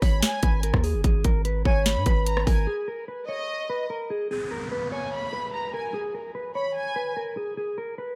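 Trap-leaning hip hop at 147 BPM in a half-time 4/4 feel, this brooding, eerie excerpt sits in G# minor and is cut from a longer piece. A clean, fingered electric guitar carries the melody up front, its mellow tone softened by subtle chorus and a low-pass filter, while a lush, woody violin section bowed sul tasto with vibrato drifts behind it as a distant second line through tape echo. Underneath, a deep sine-like 808-style bass with a fast attack and long decay anchors the opening G#m chord alongside an electronic trap kit of hard-clipped kick, sharp snare, bright hi-hats and rim click, re-recorded in a small room and placed up front. Bass and drums drop out at about 2.7 seconds, opening a break where guitar and strings hang in digital ambience. From 4.3 seconds the harmony falls away and an electronic downlifter sinks beneath the strings, leaving the guitar to close the passage alone.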